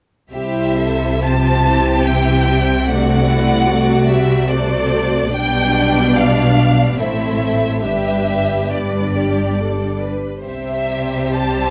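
At 0.3 s a string orchestra sets in together for a tender, serene slow romantic movement in C major, moving in a rubato 3/4 at around 64-76 BPM. A lush, up-front violin section carries the melody with expressive vibrato while a second, richer violin section sings a line beneath it. Dark, intimate violas supply the accompaniment over a focused cello section and a smooth, even double bass section. The soft attacks of the violins and violas and a moderate recital-hall reverb frame the passage as it moves from C through D7/C, G/B and Am to G and settles back on C at 10.5 s, a fragment cut from a longer piece.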